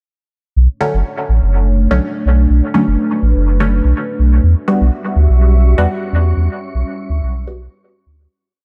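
Meditative and nocturnal, this short dub techno piece in B minor moves at 124 BPM with a light sixteenth-note swing, built on a round, up-front sine sub bass playing a syncopated riff from 0.6 s, sparse, muted chord stabs of detuned sawtooth with a filter pluck, phaser and dub echo moving one shape in parallel, and a moody, full-bodied analog pad with chorus that slowly blooms from 1.3 s over Bm9 shifting to Em9, while an airy, breathy wind-like noise texture holds a high note in its own reverb from 5.2 s as the otherwise dry mix fades out from 5.7 s.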